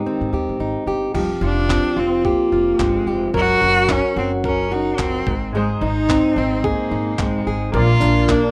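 A rich, bowed cello with vibrato carries the melody up front in this easy-going, sunny acoustic pop excerpt, over a woody, full-bodied fingerpicked steel-string acoustic guitar and a thumpy, gut-strung pizzicato upright bass, joined at 1.1 seconds by a gritty, compressed soul sampler-style drum kit with handclaps, tambourine and crash cymbal, while a bright grand piano with audible action noise slips in at 5.5 seconds in the background of this rough home demo mix with light reverb.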